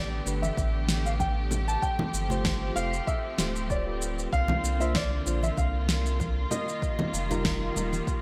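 Smooth and wistful, this sunset chillout passage, cut from a longer piece, moves through suspended ninth chords over a lightly swung groove with a bright 1980s-style digital sheen and plate-reverb ambience. A dark, boxy baby grand piano carries the melody with subtle chorus and delay, while a rich bowed string section with light vibrato holds sustained chords and a mellow FM electric piano with chorus fills in soft accompaniment from 0.3 seconds. Underneath, a round sine sub bass sits up front, joined by a gated-reverb electronic shaker, fat snare and conga layer, background acoustic congas, and a deep electronic kick drum that enters at 0.6 seconds.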